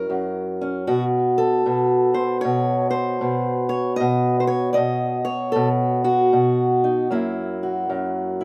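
Acoustic country blues in a laid-back, rollicking mood, played at 77 BPM in 4/4 with a relaxed swing on the eighth notes. A lone fingerpicked archtop guitar carries the whole piece, ranging from F#2 up to D#5, with its boxy body tone and the warm sound of fresh strings sitting up front in the mix. The harmony opens on F#7, moves to B7 at 0.9 seconds, and returns to F#7 at 7.1 seconds, giving the brief passage a classic blues turn. The guitar is tuned slightly sharp of standard pitch, to A4 = 441 Hz. Recorded outdoors, the sound is dry and open-air, with little reverb around the instrument, and this short fragment of a longer performance runs about 8.4 seconds.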